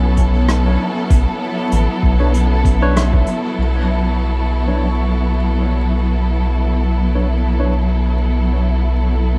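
Lush, distant bowed strings holding a Bsus2 chord open this hazy, spacious excerpt of ambient dub at 97 BPM in 4/4 with swung 16ths, joined by a round, up-front sub bass, a very quiet felt-muted upright piano playing mellow arpeggios with audible action noise, and a faint bubbling, resonant filter texture. A muffled, thumpy kick sits in the background until about 3.2 seconds, and brushes with dub-echoed hi-hat and rim clicks play until about 3.4 seconds. A bright, clean tine electric piano adds dub-echoed stabs from 2.2 seconds that take on a filter sweep from 3.6 seconds, and everything rests in light small-room reverb under a layer of vinyl crackle.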